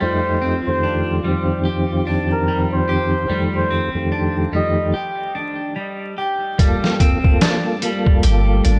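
A bucket-muted trumpet plays a veiled, jazz-style solo melody with light vibrato and tape echo over a mellow tonewheel organ with overdrive, fast rotary speaker and tremolo, very quiet string-machine cellos holding sustained chords, and picked arpeggios from a slightly broken-up electric guitar with phaser, all on F7 in this dark, smoky trip hop excerpt at 73 BPM with a 16th-note swing and vinyl crackle; after a break, a compressed, pitched-down sampler drum kit with a thumpy kick enters at 6.6 seconds on Gm7, followed at 8.2 seconds by a deep, round 808-style bass.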